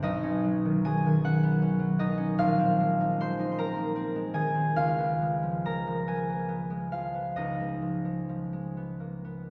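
This is a classical solo piece for concert harp, wistful and mysterious in mood, moving slowly at 39-55 BPM counted in dotted quarters within a 6/8 metre and shaped with free rubato. The harp plays alone for the whole 9.5 seconds, fingerpicked across a broad span from A#1 up to B#5, its acoustic tone mellow and ringing. The harmony drifts through a Badd9, an A#m11 at 2.4 seconds and a C#9 at 4.8 seconds, and these rich, extended chords give the passage its hazy, unresolved colour. The harp sits up front, yet the listening perspective is from further back in the room, and a lush concert hall reverb with a 2.1-second decay lets each note bloom into the space. Cut from a longer work, this brief excerpt feels like a suspended moment of quiet reflection.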